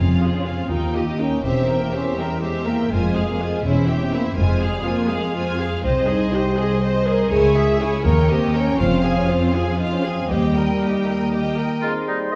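Heard from further back in a reverberant scoring stage, this fragment of a quick classical-period movement for symphony orchestra moves in a straight 6/8 with an urgent, restless mood, turning from a minor home toward a brighter major colour partway through. Two violin sections carry the music from the start, one singing the melody with focused vibrato and a smooth top while the other traces a second line just beneath it. Violas fill in an even, distant accompaniment, and mellow French horns hold sustained chords alongside the strings. The low end is anchored by a clear, up-front cello section and a lush double bass section. At 11.8 s the strings give way and the woodwinds take over for a brief closing moment: a clear oboe and a pure, metallic flute on second lines, a warm, roomy clarinet set back in the hall, and a mellow bassoon adding accompaniment alongside the horns, which sound until 12.4 s.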